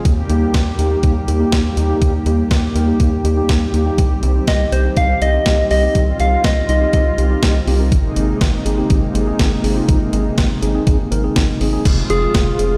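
Driving yet melancholic, this synth-pop excerpt at 122 BPM moves through Eb, Cm, Abadd9 and Fm, with a thumpy, up-front 12-bit drum machine and a rubbery, hollow square bass under a mellow tine electric piano and a bold, brassy analog pad thickened by chorus, while a round, warbling FM synth lead with chorus and digital delay takes the melody from 4.5 s and returns at 12.1 s, all heard as if played through a big sound system in a bare stone room with light reverb.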